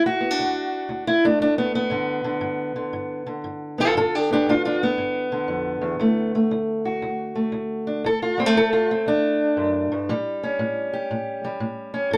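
A fingerpicked steel-string acoustic guitar with a dark, boxy parlour tone sits up front and plays alone throughout this laid-back, rollicking acoustic country blues excerpt in D major, swinging in 4/4 at 118 BPM through a D, G7, D and A7 progression in a short, wet booth ambience.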